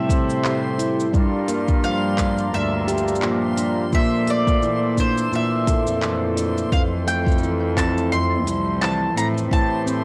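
Folktronica at 86 BPM in F major with a pastoral, warm mood and a light swing, cut from a longer piece, where a bright, woody picked mandolin carries the melody with tape echo and plate reverb over reedy, close-miked accordion chords, a full-bodied fingerpicked jumbo acoustic guitar playing arpeggios, a bowed cello bass that is soft-edged and distant, a dreamy reversed granular texture swelling in the background from 0.3 seconds, a deep up-front electronic kick, and an electronic kit of cabasa, handclaps and crisp hi-hats, every part except the cello carrying a cassette-tape color through chords moving from Am7 through Gm7, Bbmaj9#11 and Fmaj7.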